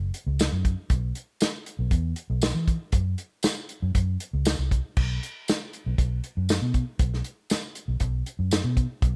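A dry excerpt of mournful, brooding straight-eighth soul blues at 118 BPM, where a dark, foam-muted fingered electric bass with a round, punchy amped tone sits up front beside a tight soul drum kit of crash cymbal, hi-hat, kick, snare and tambourine, its dusky cymbals and rolled-off top lending a roomy, distant character across the whole 9-second cut.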